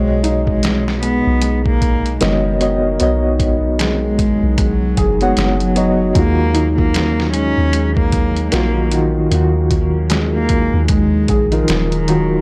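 A dry, gritty hardware sound in a small room frames this smoky, cinematic trip hop excerpt, cut from a longer piece and moving with a 16th-note swing. A dark, bowed cello carries the melody with light vibrato and a soft, intimate sul tasto tone, trailed by dub echo. Beneath it a reedy electric piano plays accompaniment through its built-in speakers with tremolo and tape echo, while a felt-muted upright piano adds boxy, mellow arpeggios roughened by vintage 12-bit sampler grit and tape echo, its action noise audible. A very quiet analog pad sustains detuned, wave-folded chords with slow attack and long release, and a soft, round 808-style bass gives deep sine tones with a fast attack that then decay. The compressed, pitched-down sampler drum kit sits up front from 0.2 seconds, with a thumpy, muffled kick, a medium-tuned snare and hi-hat, as the harmony moves from Badd9 to D#madd9 at 6.2 seconds.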